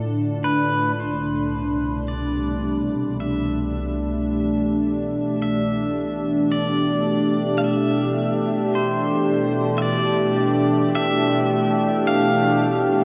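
Ambient excerpt in A minor at 54 BPM, reflective and serene, where a warbly, detuned tape-like pad with chorus holds sustained chords up front from Dm through Cmaj9 to A7sus2 while a bright, clean pedal steel guitar fades in from 1.0 seconds with a high melody through diffuse delay, all bathed in a huge reverb and the pitch drift of worn cassette tape.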